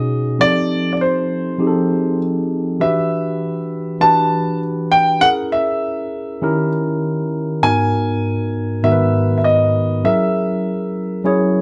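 A gentle 16th-note swing at 54% drives this soul fragment at 100 BPM in 4/4, tuned slightly sharp to A4 = 441 Hz, with a smooth, warm mood. An intimate concert grand carries the melody between C5 and A5, its natural tone showing deep bass, short sustain and audible action noise as it sits up front until 11.2 s. Beneath it, a mellow, clean tine electric piano heard through its built-in speakers plays the accompaniment from G#2 to C#5, also up front, and rings on to 11.6 s. The harmony moves through F9, Em9, A#m7b5, D#7b9, G#m7 and F#9. The two keyboards play live together in one room, bathed in a moderate studio reverb, in a short section lifted from a longer piece.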